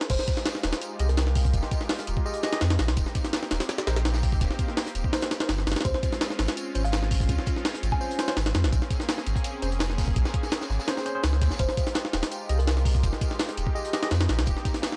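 A compressed, pitched-up jungle sampler kit sits up front with a thumpy kick and high-tuned snare, while a deep, thick sub bass drives this frenetic, nostalgic drum and bass drop cut from a longer piece, beneath a lush, detuned sawtooth pad treated with chorus and phaser over chords moving from Fm9 through Dbmaj7 and Bbm9. In the background, a dark, crunchy breakbeat kit with tambourine adds texture, a tine electric piano plays stabs with dub echo from 1.0 seconds, and a woody, buzzing kalimba drops in short echoed phrases at 0.1, 5.8 and 11.6 seconds. The whole mix has a dry, gritty hardware character with cassette tape and transformer saturation.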